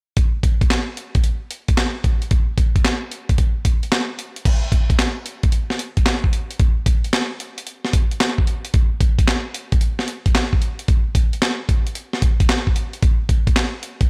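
A gritty, compressed breakbeat drum kit with 12-bit sampler grit, a thumpy kick, medium-tuned snare, hi-hat, handclaps and crash cymbal sits up front in this slick, confident swung R&B excerpt, playing from 0.2 to 14.1 seconds and shifting into a new section at 4.5 seconds within a digital ambience.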